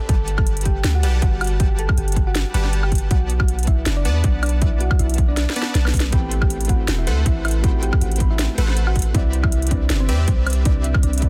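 Future bass with a dreamy, emotional half-time feel, where a round, tine-like thumb-piano-style pluck with chorus and dub echo carries the melody over punchy detuned supersaw stabs and a deep sine 808 bass, all pumping under sidechain, with a hard-clipped kick up front and a trap kit of sharp snare, metallic hats and woodblock. A drum fill arrives briefly at 5.4 seconds before a dark, vintage grand piano slips into the background at 6.1 seconds, all in a dense, heavily limited master.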